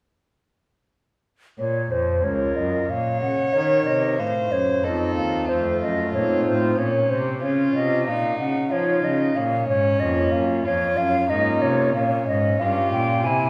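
Set in a steady, straight four-beat metre, this cut from a longer baroque-style sonata movement flows with a grave, solemn character. At 1.6 seconds the hollow concert flute takes the melody with a pure, tongued tone and vibrato, sitting up front and close, while the rich cello carries the bass line and a pipe organ fills in thick, romantically voiced harmony on its foundation stops. A single violin joins at 2.9 seconds as a second line, its gut-string, period-style bowing giving it a reedy edge with light vibrato. The cello shares that gut-string, period character, also played by one bowed player with light vibrato. The harmony settles mostly on minor chords, with a dominant seventh and a half-diminished chord adding tension along the way. The ensemble is heard from further back in a wet recital hall, whose long reverberation wraps the continuo texture in a resonant halo.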